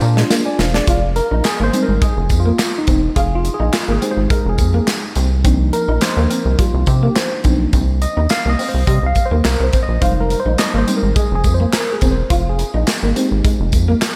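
A worn, slightly out-of-tune tine electric piano with phaser takes a solo from 0.9 s in this slick, funky early-eighties boogie funk groove at 105 BPM in F dorian, moving through Fm7 and Cm11 over a rubbery, nasal square bass up front, a punchy studio drum kit with handclaps that opens on a fill, a slightly broken-up electric guitar riff with analog chorus, and a jingly vintage tambourine in the background, all set in a dreamy hall reverb.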